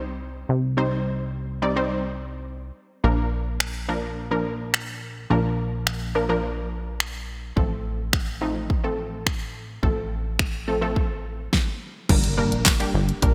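Energetic and confident, this short dance-pop excerpt at 106 BPM in C dorian opens with a lush, detuned unison synth pluck and a funky, sawtooth-edged analog bass, both pumping under sidechain, before an electronic pop drum kit with a punchy kick, fat snare, snaps and handclaps enters at 3.6 seconds, the chords moving from Cm through Bb and F/A to Gm as a very quiet impact and a barely audible jingly tambourine arrive near the end, all set in a bright 1980s-style digital sheen with a lush hall reverb.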